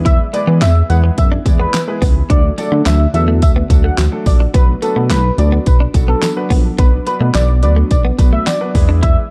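Confident and driving, this dance-pop excerpt at 107 BPM in B dorian moves through E, D and B minor over a dry, dark mix, where a punchy, up-front electronic drum kit with fat snare, metallic hats and handclaps and a glossy, chorused synth bass drive the groove beneath a pumping baby grand piano, a bright, clean electric guitar riff drenched in lush chorus, a very quiet, glassy FM pad, a jingly tambourine in the background, and a bold octave-doubled sawtooth lead carrying the melody with vibrato, chorus and delay.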